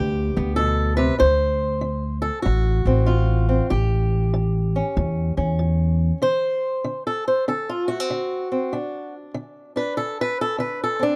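A swinging 4/4 feel at 96 BPM drives this soulful, swaggering acoustic country blues excerpt in D mixolydian, where a boxy, fingerpicked swing-style acoustic guitar carries the melody up front over a dark, woody pizzicato upright bass through G, D7 and A7 changes until the bass stops at 6.1 seconds, leaving the steel-string acoustic guitar to take a solo from 6.2 seconds, all captured in a dry, close, 1970s-style small-room sound.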